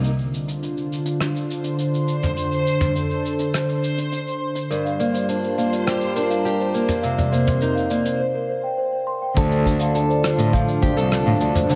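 A small-room recording with light reverb carries this short, autumnal and wistful folktronica excerpt at 103 BPM in a straight 4/4, built on a smooth, detuned sawtooth pad with chorus holding sustained chords up front, soft brushed drums on cabasa, hi-hat, rim click and toms, and a boxy parlour steel-string guitar fingerpicking arpeggios through delay from 4.7 s, finger squeaks audible. A reversed, granular texture swells high from 1.6 s until 8.2 s, and a bell-like celesta with soft felt hammers adds a delicate second line through tape echo. After a brief break, the closing stretch at 9.4 s brings in a punchy kick drum and an intimate, sul tasto bowed cello with light vibrato as the bass, as the chords move from Dm7 through Amadd11/D, Gm7 and Cm7 back to Dm7.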